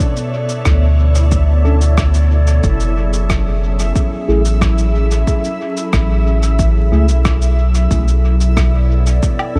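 The soft dub sub bass sits up front from 0.7 seconds, deep and round with a fast attack and sustained tones, anchoring this hazy, meditative slice of ambient dub at 91 BPM in 4/4 with a straight feel, in B dorian. Above it, a dark, organ-like additive pad holds sustained chords with a slow attack, its detuned, evolving tone thickened by ensemble chorus and reverb as the harmony moves from Bm9 to F#m7 at 2.6 seconds and back to Bm9 at 7.9 seconds. An overdriven, layered electronic kick drum gives a deep pulse, while a muffled, pitched-down set of electronic cabasa, rim click and woodblock adds compressed, sampler-style detail sent into dub echo. From 1.6 seconds a mellow tine electric piano places clean stabs in the background, colored by phaser and dub echo, and a reversed, granular swelling texture glimmers bright and dreamy above. The mix is fairly dry overall, with vinyl crackle running throughout this fragment cut from a longer piece.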